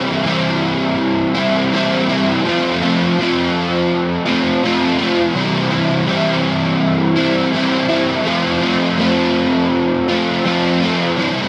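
An overdriven semi-hollow electric guitar, picked and double-tracked, sits up front alone in this short rock excerpt, its hollow-body tone colored by analog chorus and tape echo. At 82 BPM in a straight 4/4, it moves between C and F in a wistful, blissful mood, staying between C3 and F4. A moderate plate reverb lends the part a lingering glow across its 11.5 seconds.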